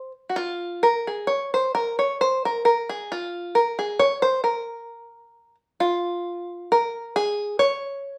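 Bittersweet and whirling, this short musette excerpt in a lilting three-beat metre, with a light swing and rubato give, features a lone open-back banjo carrying the tune, fingerpicked and up front. Its bright, twangy, plunky voice stays within a narrow, mid-high register across two passes of the same phrase, the second beginning at 5.8 seconds. A moderate studio reverb lends the live-in-the-room sound a modest sense of space before the cut at 8.2 seconds.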